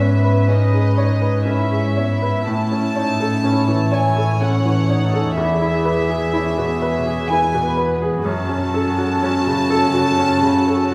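A reverberant recital-hall acoustic surrounds this short, sorrowful orchestral cue, taken from a longer film score and lasting 10.9 seconds. Moving at a slow, rubato 62 BPM in 3/4 and set in F# dorian, it drifts through C#m7/G#, A, E and F#m. A symphonic violin section carries the melody with a pure, floating, sul tasto tone and soft attack. A bright, brilliant baby grand piano provides open accompaniment alongside an intimate chamber viola section, whose sul tasto playing carries gentle vibrato. A dark chamber cello section holds the bass with light vibrato and a smooth top, while a warm concert harp rings out fingerpicked arpeggios in the background, and all five parts sound together from start to finish.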